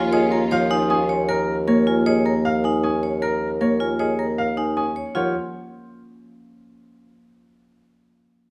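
This hypnotic, bright piece of minimalist classical pattern music in 5/4 opens with a dark French horn line and distant, lush violin chords that stop at 1.0 s, while a fingerpicked Celtic harp, metallic vibraphone and woody xylophone arpeggios, and an up-front mellow bassoon bass sound beneath a brilliant grand piano melody that enters almost at once. The vibraphone, xylophone, bassoon and piano stop at 5.3 s, leaving the ringing harp alone until 7.1 s as the harmony shifts. Close, detailed microphones and a moderate recital hall reverb give the sound clarity and a sense of space.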